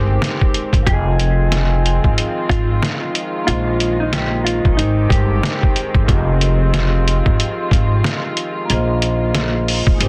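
A swung, muffled sampler-style drum kit with a thumpy kick sits up front alongside a woody pizzicato upright bass, setting a tough, dark boom-bap hip-hop groove in this short cut from a longer piece. A ringing vibraphone accompanies while a reedy, gut-toned string section holds sustained chords underneath, and a mellow, clean electric guitar carries the melody through tape echo from 0.9 to 5.6 seconds. The sound is dry and dense, with a heavily limited modern master.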